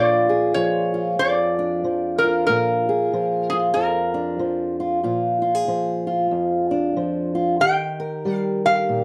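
A metallic, nasal resonator slide guitar, played with fingerpicks and touched with slapback echo, carries the melody up front in this swaggering, laid-back acoustic country blues cut from a longer piece, swinging over a woody, boxy fingerpicked old ladder-braced acoustic guitar on old strings, with both heard from 0.0 to 9.0 seconds in a dry, close 1970s-style studio sound with light reverb as the chords move from Bb7 to Eb at 7.6 seconds.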